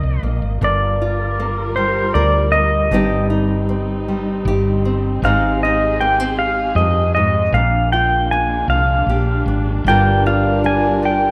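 An acoustic folk-pop ballad in a slow 3/4 at 78 BPM, this short passage cut from a longer piece feels intimate and heartbroken. A twangy, fingerpicked pedal steel guitar carries the melody up front, its bright, compressed slide tone shaped by volume swells. Beneath it, a classical-style nylon-string guitar is fingerpicked in accompaniment, while a round, woody fretless electric bass with a hollow-body character sits up front as well. A studio string section holds sustained bowed chords with vibrato and expressive portamento, its top kept smooth, as the harmony moves from Gm7 through Eb6/G and Abmaj7 to Bb13. At 9.9 seconds a warm French horn enters with a vibrato second line on a single D4, and the whole passage carries light small-room reverb in a rough home-demo mix.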